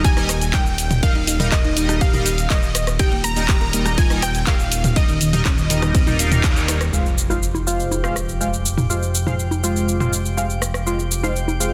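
A punchy electronic kick sits up front in this dreamy, bittersweet progressive house excerpt at 122 BPM in F minor, driving a straight 4/4 drop until a band accent at 6.4 seconds. Around it, a layered, tape-warm house kit of handclaps, hi-hat, ride cymbal, rim click and shaker mixes with an analog drum machine playing congas, rim click and toms, while a fat, detuned sawtooth bass with tube saturation holds the low end. A glossy, retro polysynth adds mellow stabs coloured by phaser and delay, and a lush, bright unison pluck carries the melody, joined by a second line from a smooth supersaw in the background over soft, dark, round arpeggios with analog chorus. Many parts pump with sidechain, and the melodic layers drop away near that accent before a sub drop impact lands at 6.9 seconds as the harmony moves from Eb to Fm. A calm, glassy texture of drifting overtones then floats behind the stabs and bass, all set in light reverb within a dense, heavily limited modern master.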